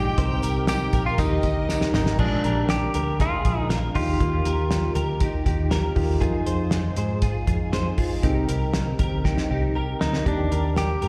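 Breezy and nostalgic, this jangly indie pop cut moves at 119 BPM in a straight 4/4, set in Eb major and heard as if from a live gig through the venue's PA into a recital hall's light reverb. A bright, twangy clean electric guitar carries the melody in its opening seconds and returns near 10.0 s, while a smooth violin section adds a light-vibrato second line in the background only until 1.9 s. Beneath them, soft, mellow electric-piano-like synth keys with chorus and phaser hold the accompaniment throughout, and a direct-recorded clean guitar spins compressed arpeggios through ensemble chorus and digital delay. A vintage foam-muted fingered bass sits round and punchy up front, joined at 0.2 s by a cloth-damped, thuddy drum kit with dark cymbals and a fat snare, plus a distant, jingly tambourine early on. Drum fills mark the turn into the longer second passage and its close, as the chords move from Cm7 through Bb7, Fm7 and back to land on Ebmaj7.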